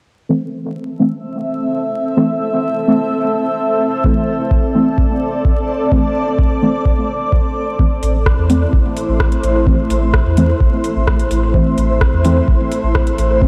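A blurred, granular cloud pad sits up front in this cavernous dub techno excerpt, its detuned sine tones holding slow-blooming chords bathed in their own reverb and pumping with the sidechain. Beneath it, a full-bodied chord stab opens the piece at 0.3 seconds, its short, dark hits thickened by chorus and phaser, trailing dub echoes and shaped by a filter sweep. An overdriven analog kick enters at 4.0 seconds, close and up front, carrying the grit of a small room. At 8.0 seconds a round, soft sub bass arrives with a quieter layered house kit of metallic hats and rim clicks, tape-softened and scattered through echo. The mix is dreamy and soaked in long reverb, with vinyl crackle adding a hazy grain to this steady, hypnotic fragment.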